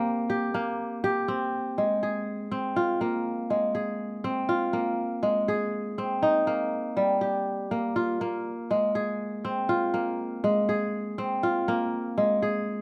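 Close, detailed microphones and a light reverb put a lone kora up front in this short cut from a longer contemporary instrumental piece. The kora plays solo for the full 12.8 seconds, its fingerpicked acoustic tone ringing and crisp within a compact range from G3 to Ab4. The music sits in F minor, with tuning set to A4 = 441 Hz, and moves in a straight 7/8 at 242 BPM counted in eighths, which gives it a hypnotic yet urgent pull. A brief opening on Gmadd11/Bb gives way at 1.5 seconds to the main passage, which cycles through Fm, Ab and Gm7 before returning to Fm and Ab. The result is an intimate, insistent solo built from one instrument's detailed, resonant voice.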